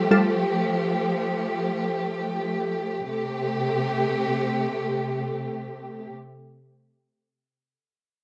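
Tough and hypnotic, this short fragment of a dancehall piece floats in free time in A minor, tuned slightly sharp to A4 = 441 Hz. A bowed string section carries it alone, holding sustained chords from 0.0 to 6.1 s across a span from C3 to G4. The ensemble sound is lush and expressive, with vibrato, and it sits up front in the mix. The harmony rests on Fadd9 before moving to Am7 at 3.1 s, where the second section begins. A wet studio reverb with a short 0.5-second decay surrounds the strings, and the overall mix has the rough character of a home demo.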